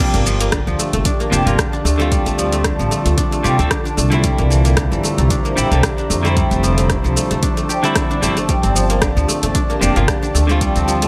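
A silvery, fingerpicked guzheng rings out up front with delayed arpeggios, joined from the start by a clean, compressed electric guitar and an overdriven deep house kit of metallic hi-hats, rim clicks and shaker in a small room. This excerpt of meditative organic downtempo carries a light 16th-note swing, while a dark, woody upright bass plucks low underneath and an airy, detuned pad with ensemble chorus and long release breathes behind everything in sidechained pulses. A punchy, layered electronic kick enters at 0.5 seconds, and the chords move from Gmadd9 through Dm, C7 and F6 before returning to Gmadd9 at 8.5 seconds.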